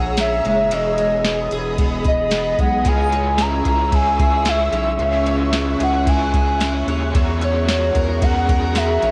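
A soft vintage rhythm box sets a steady, straight 4/4 pulse at 112 BPM from 0.2 seconds, its deep kick, crisp snare, ride cymbal and tambourine carrying a cassette grain. This ethereal, dreamy stretch of dream pop, cut from a longer piece, rests on a round analog bass whose mellow, evolving tone holds the low end beneath a shimmering, octave-doubled twelve-string acoustic guitar picking bright arpeggios, finger squeaks audible through analog chorus, tape echo and plate reverb. An airy pad sustains full-bodied, detuned chords with a slow attack and long release, bathed in ensemble chorus, while a hollow, woody clarinet-like synth lead sings the melody with gentle vibrato, tape echo and plate reverb. A worn, slightly out-of-tune celesta adds delicate, bell-like sparkle at a very low level until 6.6 seconds, and from 2.8 seconds a raw garage guitar joins in the background, overdriven, double-tracked and pulsing with tremolo. 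The harmony moves from A#m7b5 through G#m/E and C#m to F#add9/E, and the whole is captured as a home cassette recording in a modest booth ambience.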